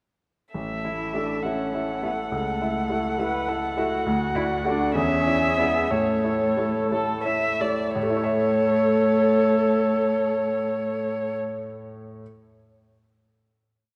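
At 0.5 s a muted violin, viola and cello enter together with a clear baby grand piano in a cheerful, lively classical-period movement for piano quartet in A major, in a quick 6/8 at 56-69 BPM counted in dotted quarters. The up-front, veiled violin carries the melody with vibrato and answers at phrase ends, while the con sordino cello sings a second line and the dark viola holds sustained chords with independent inner lines. The piano adds a bass with rocking two-note chords and long sustain as the music slows from 3.2 s into a final chord at 8.0 s, where the strings stop at 11.4 s and the piano rings on in a wet concert hall reverb.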